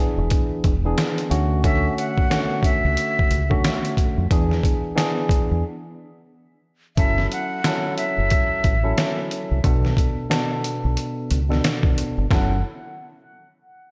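A dreamy, reverb-soaked mix opens this tough yet reflective boom-bap hip-hop excerpt at 90 BPM in F# minor, where an up-front, worn and slightly out-of-tune tine electric piano comps over E7 and Dmaj7 before shifting to F#m7 and Bm7 at 7.0 seconds. A dark, round, punchy fingered bass and a gritty, compressed, pitched-down sampler drum kit with a thumpy kick and medium-tuned snare drive the swung groove, with a break arriving at 5.6 seconds. A breathy, straight-toned concert flute enters at 1.6 seconds with a soft-attack melody, trailed by diffuse ambient delay, while a filter sweep runs through the second half.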